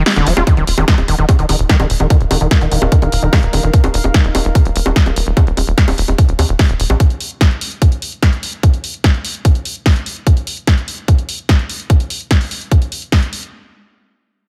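Psychedelic trance at 147 BPM in 4/4, alien and psychedelic in mood, cut from a longer piece: a squelchy, resonant acid bass with tape echo and sidechain pumping runs a riff under a filter sweep until 3.7 seconds, while a tight, punchy sequencer bass drives beneath it and an up-front electronic kick with a tape-warm tightness holds the pulse to 13.2 seconds. A layered techno kit of bongos, hi-hat and an overdriven, punchy snare opens with a band accent and short break, and a deep, warbling vintage pad with chorus and built-in reverb sits moody in the background, fading out by 7.0 seconds. The mix is dry, with the kick and sequencer bass up front.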